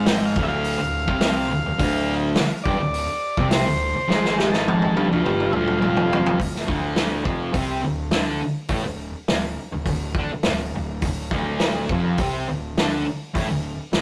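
Garage rock with a swaggering, menacing edge at 104 BPM in 4/4, sitting on a D minor chord and cut from a longer piece. A buzzy, overdriven transistor combo organ solos with digital delay until 6.4 seconds over a bright, double-tracked fuzz guitar riff, a punchy overdriven fuzz bass, and an up-front vintage drum kit with a tight kick, gritty tone and rolled-off top that plays a fill from 4.1 seconds. Guitar, bass and drums carry on into the second section, captured as a rough rehearsal-room recording with light reverb and tube saturation.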